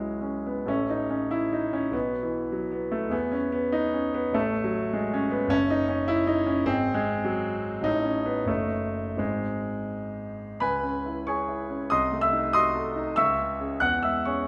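Flexible rubato in 2/4 gives this short passage from a longer romantic character piece its bittersweet, passionate sway. A solo concert grand piano, warm and up front with a deep, open bass reaching from F#1 to F#6, moves through a yearning chord progression before a new section arrives at 10.6 s, darkened by a diminished harmony. A moderate recital hall reverb adds a natural sense of space around the instrument.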